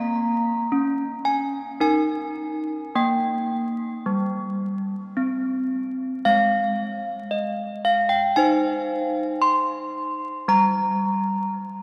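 In a slow, straight 4/4, this short classical tune for handbells moves at an unhurried pace that feels both festive and serene. Desk bells carry the whole piece alone from the first moment to the close at 11.8 seconds, ranging from G3 up to C6 with a clear, ringing, bell-like tone that is bright and a little clanky. The bells sit up front and are slightly out of tune, giving the playing a homely, handmade charm. A cathedral reverb with a long tail bathes the sound, and the room is heard from further back, with a vinyl crackle underneath. The harmony opens on Bbm and Eb, then a second passage begins at 6.2 seconds on Ab before settling on a rootless Eb/G, leaving the impression of a fragment lifted from a longer piece.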